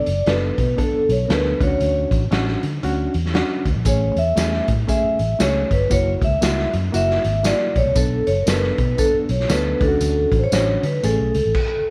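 Swung eighths at 117 BPM in 4/4 give this uptempo 1960s-style soul excerpt a buoyant, uplifting and joyful lilt. A raw garage drum kit sits up front with a gritty, saturated sound, a punchy kick, a medium-tuned snare, hi-hat and crash cymbal in a stone room with a rolled-off top. A round, foam-muted fingered electric bass anchors the low end. Over this, a vibraphone played with medium mallets carries the melody with a metallic, ringing tone and slow motor vibrato. A reedy, barky electric piano, lightly overdriven with fast tremolo and heard through its built-in speakers, plays the accompaniment. A close, jingly tambourine joins at 3.9 seconds as the chords move through Bm7, Dmaj7, Amaj7 and F#7, all set in a light studio reverb.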